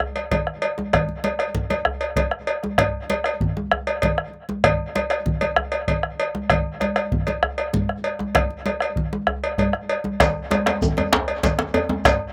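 Earthy and driving, this West African traditional drum ensemble excerpt in 12/8 at 129 BPM is anchored by a deep, dark bombo up front, joined by a metallic, band-limited cowbell at 0.2 seconds, thick-skinned, saturated congas with a slapback echo, and a tight, cracking djembe, before a second, warm djembe and a grainy, mellow shekere in the background enter at 10.2 seconds, all captured outdoors with little reverb.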